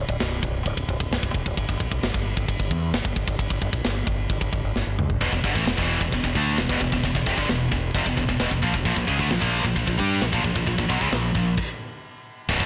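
A straight, driving 4/4 pulse opens this relentless, aggressive heavy metal piece, with a metal drum kit of bright cymbals, medium-tuned snare and tight kick ringing in a big room beside a growling fingered electric bass pushed through overdrive. After a drum fill, a double-tracked, high-gain guitar crashes in up front at 5.2 seconds with a distorted, picked riff moving from E5 to A#5, until the band hits a stop at 11.6 seconds. The dry recording sounds blown-out and overdriven.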